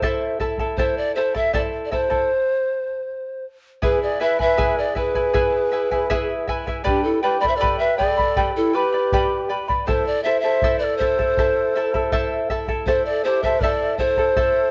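A straight, unhurried two-beat pulse carries this wistful, melancholic piece of Andean folk, cut from a longer performance. Up front, a polished, hollow-toned pan flute sings the melody with vibrato, its tongued notes carrying an airy wooden chiff. Beside it, a fingerpicked charango shimmers on its double strings, some doubled at the octave. Underneath sits a deep, dark bombo. After a stop between 2.3 and 3.8 seconds, a large quena enters as a second line, breathy and distant with a soft attack and its own vibrato, while the harmony moves from A minor through E and G back to A minor. Light reverb and a small room ambience give the ensemble an intimate, close-knit setting.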